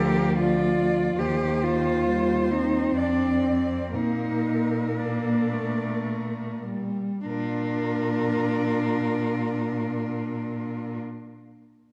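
Four bowed cellos open together in this tender, serene classical passage, cut from a longer piece, moving in a lyrical 3/4 at a rubato 50 to 74 BPM in Bb major, tuned to A4 = 444 Hz. The melody sits high in a rich, focused voice with vibrato, yet it sounds distant and slightly behind the others. A second cello carries an up-front counterline beneath it, while a dark third cello supplies close, intimate accompaniment with light vibrato, soft attacks and a smooth top. The bass cello is expressive and forward, colouring its low line with vibrato and portamento. The opening section slows down until about 7.3 s, where a new section begins, and the harmony travels from a Dmadd11 colour through Cm/Eb to a settled Bb. A moderate scoring-stage reverb gives the ensemble a gentle, spacious bloom.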